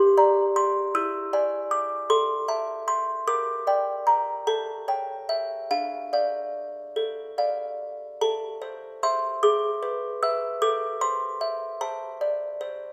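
Rubato 6/8 meter sways at roughly 47-52 beats per minute on the dotted quarter, giving this classical lullaby for music box a slow, rocking pulse. The mood is wistful and fragile, opening in D minor over a chord sequence that drifts through G minor, E7 and A minor before settling on D minor. At 8.2 seconds the music moves into A minor, circling between A minor and E7 over G-sharp. The solo music box carries everything from start to finish across a range of D4 to E6, its delicate, tinkling plucked tone sounding like a small box that is slightly out of tune, set mid-forward and up front in the mix. A moderate scoring-stage reverb with a 1.9-second decay gives the little instrument a sense of space, and the passage is a short fragment of a longer piece, ending at 12.9 seconds.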